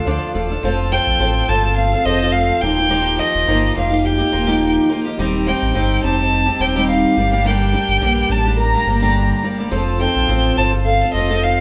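A bowed violin carries a smooth, vibrato-tinged melody over a shimmering, octave-doubled picked twelve-string guitar, with a small fingerpicked nylon-string guitar tucked into the background and a deep, full sub bass joining at 0.1 s. This wistful, tender acoustic pop fragment has a gentle swing and moves through a chord progression that settles back on F near 9.7 s. The band sounds as if playing live together in one large room, bathed in a wet studio reverb, with finger squeaks on the twelve-string adding intimacy.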